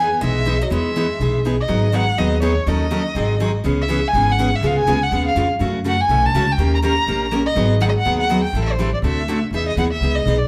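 Swung eighths drive this charming, playful snippet of acoustic string swing, where a bowed violin carries the melody up front with vibrato, portamento and a smooth top, a boxy parlour guitar adds a brief second line in the background until 1.4 s, a bright auditorium guitar picks the accompaniment, and a woody, thumpy pizzicato upright bass on gut strings sits under the chords, the whole heard from further back in a wet studio room.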